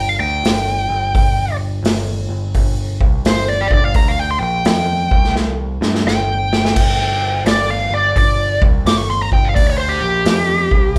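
Smoky and heavy, this excerpt cut from a longer blues rock and southern rock power-trio piece swings at 86 BPM in G minor, the band playing live together in one room with light reverb. A smooth, dark, overdriven lead guitar with wah solos up front throughout, over a growling, bright picked electric bass with overdrive. A vintage acoustic drum kit enters at 0.4 seconds with a punchy kick, medium-tuned snare and dark cymbals in a pumping small room, and plays a fill from 5.4 to 6.8 seconds.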